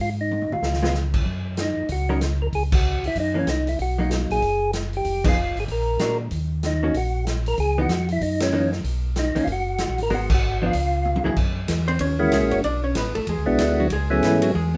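Light reverb gives this greasy, bluesy soul jazz organ trio excerpt a natural room sound, with the swinging drum kit up front, its boomy kick and medium-tuned snare ringing in a big space, as the band swings hard at 190 BPM in F# mixolydian. A round tonewheel organ carries the melody with third-harmonic percussion through a slow rotary speaker, while a second, dark tonewheel organ with audible key click plays the bass line, also through a slow rotary speaker. A clean, compressed hollow-body electric guitar picks out an accompaniment from 0.8 seconds, the band hits accents along the way, and a drum fill ending at 11.4 seconds hands off to a guitar solo.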